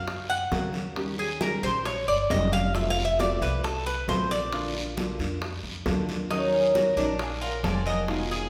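Bathed in a church-like hall reverb, this sultry stretch of Cuban son and guajira puts a bright, metallic tres up front, soloing in picked arpeggios over fingerpicked nylon-string guitar, a woody, growly pizzicato upright bass, background bongos and thick-skinned congas, and a raspy guiro, until at 6.3 seconds a ringing concert harp takes the melody with a floating, sul tasto violin section behind it.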